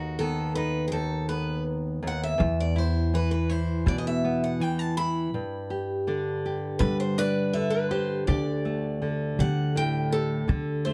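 In a straight, unhurried 4/4, this gentle, pastoral acoustic folk passage, cut from a longer piece, opens with a boxy, picked steel-string guitar carrying the melody as a featured solo through 8.3 s over a full-bodied, fingerpicked nylon-string guitar accompaniment, both placed up front. A woody, growly pizzicato upright bass joins at 2.4 s, adding a dark, thumpy low end as the harmony moves from B/D# through E5 and G before settling on a Dsus4 at the turn to a new section. The sound is close and dry, with little reverb.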